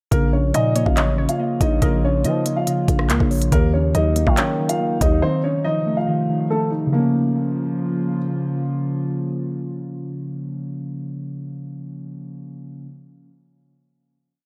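An echo-heavy, lightly reverberant mix opens this ominous, tense drill track at 141 BPM in a half-time feel in Bb harmonic minor, where a dark, boxy concert grand piano loops an octave-doubled melody over muted, felt-like synth keys arpeggiating in eighths, a warbling lo-fi tape-like pad sustaining chords in the background, a soft round pluck adding a sparse counter-melody, a growling, saturated 808-style bass with pitch slides, and a drill kit of knocking kick, crisp skipping hats, handclaps and rim clicks that drops out at 5.1 seconds before the hook gives way to a final Bbm chord at 6.9 seconds.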